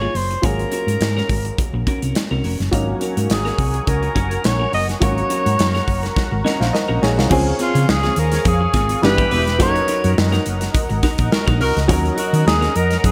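A lightly swung 105 BPM groove in 4/4 drives this breezy, glossy slice of polished 1980s jazz-funk pop: a breathy, whispered alto saxophone carries the melody through digital delay over an intimate baby grand piano, a chorused clean electric guitar riff, a dark, round hollow-body bass and a tight, up-front studio drum kit with gated reverb that plays a fill at 6.2 seconds, while a smooth, detuned analog pad enters at 2.7 seconds and a mellow, distant horn section adds a second line from 9.0 seconds, all set in bright digital production.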